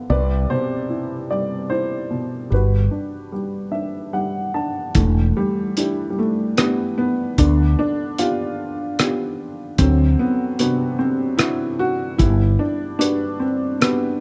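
A slow, straight 3/4 pulse carries this short cut from an intimate, heartbroken acoustic folk-pop ballad. A worn, woody upright piano leads the melody from the opening, its slightly detuned, boxy tone and short sustain sitting up front with audible action noise, and it plays a fill from 3.3 to 5.0 seconds. Beneath it, a mellow fretless electric bass holds the low end with a dark, round, punchy sound, moving through chords that pass from Cmaj7 and Gmaj7 to Em7 and G7/D before settling back on Gmaj7. At 4.9 seconds a cloth-damped, thuddy drum kit joins with hi-hat, rim click and a tight kick, its muffled, gritty, lo-fi character and rolled-off top suggesting a small room. The recording is close and detailed with little reverb, so each part feels near and personal.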